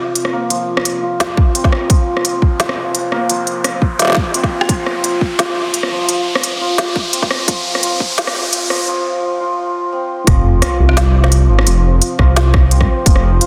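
A bright, shimmering santur plays filtered, delayed arpeggios over a dark, detuned analog pad with chorus and 12-bit sampler grit, pumping in the background, as this excerpt of spacious, heavy half-time drum and bass at 172 BPM builds under a rising electronic sound effect and a filter sweep. An overdriven organic electronic kit of woody snare, rim click and smooth hi-hats sits up front with a hard-clipped kick, which drops out at 8.1 seconds ahead of a break at 8.9 seconds. At 10.3 seconds the drop hits with a sub drop impact, the kick returns, and a deep, rumbling, detuned saw bass takes the low end.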